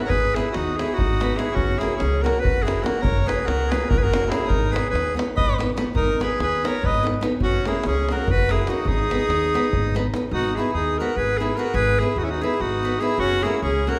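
Balkan folk in the manner of a wedding band, this wild, virtuosic passage is cut from a longer piece and moves in a straight 7/8, swinging between G# minor and F#. A clear alto saxophone carries the melody up front, close-miked with a soft attack and a classical-style poise, playing as a solo voice over the ensemble. Beneath it, a reedy, hollow accordion supplies a second line while a small, fingerpicked nylon-string guitar fills in the accompaniment. An upright bass with gut strings gives a woody, dark, thumpy pizzicato foundation, and a deep davul, heard in its own small-room sound, drives the percussion until it drops out at 10.2 seconds. The whole band sits in a church or concert hall with a wet recital-hall reverb, lending the fiery playing a spacious, ringing glow as the opening theme returns at 10.3 seconds.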